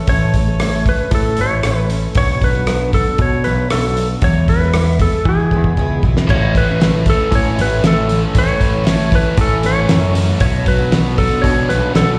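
A picked twelve-string acoustic guitar, woody and octave-doubled with slapback echo, sits in the background as a twangy, clean lap steel carries the melody up front over punchy electric bass and a cloth-damped, thuddy drum kit in this hopeful, open-road folk and heartland rock excerpt in A major at 116 BPM, heard like a live gig through a venue's PA with recital hall reverb, where a drum fill at 5.3 seconds leads into a biting, double-tracked overdriven guitar riff at 6.3 seconds over chords moving from A to Bm to E.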